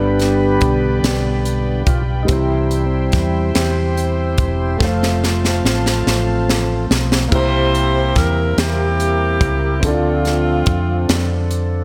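A light, small-room sound frames this jubilant, hopeful slow gospel excerpt in 6/8, where a percussive tonewheel organ with key click and fast rotary speaker takes a solo over an intimate grand piano with audible action noise, a round, punchy hollow-body electric bass, distant floating strings that fall away at 7.3 seconds, and a crisp drum kit with dark cymbals that plays a fill from 4.8 seconds, before a close-miked saxophone section with light vibrato carries the melody from 7.3 seconds over C7 and Dm7 chords.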